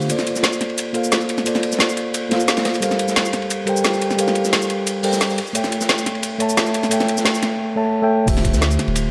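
A mellow, clean tine electric piano with delay carries lush, dreamy chords through this 176 BPM liquid drum and bass build-up, cut from a longer piece, over two drum kits: an up-front, overdriven garage kit with a woody snare and metallic hats, and a dark, gritty breakbeat kit with dark cymbals and a rolled-off top. A knocking, overdriven electronic kick and a deep, sine-toned 808-style bass arrive at 8.3 seconds as the chords settle on Dm11, the whole scene set in a moderate hall reverb.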